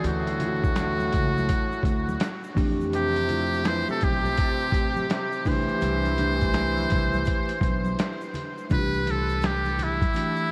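Soaked in huge ambient reverb and vinyl crackle, this dreamy, cool and relaxed jazz-hop excerpt at 83 BPM in C major sets a buzzy, breathy muted trumpet melody with tape echo up front over a growling, raspy trombone second line that drops out at 8.4 seconds, a mellow tine electric piano through a phaser, a woody pizzicato upright bass, a gritty, pitched-down boom bap kit with a thumpy kick, and tube shaker and congas in the background, before the trumpet takes a solo from 8.7 seconds on a Cmaj9 chord.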